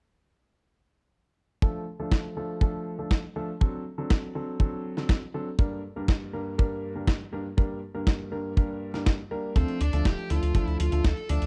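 Nostalgic and bittersweet, this italo disco excerpt moves at 121 BPM in D minor, opening at 1.6 seconds with mellow, vintage grand piano stabs under a low-pass filter sweep, set over a tight, up-front acoustic kick that is joined at 2.1 seconds by a gritty, compressed sampler-style kit of hi-hat and medium-tuned snare, both drum parts touched with studio reverb. The chords pass from Dm through D7 to Gm, and at 9.6 seconds a round, deep, detuned analog bass arrives alongside an overdriven, picked electric lead guitar melody as the harmony returns to Dm. The sound is dry and close, like a small-room 1970s studio session.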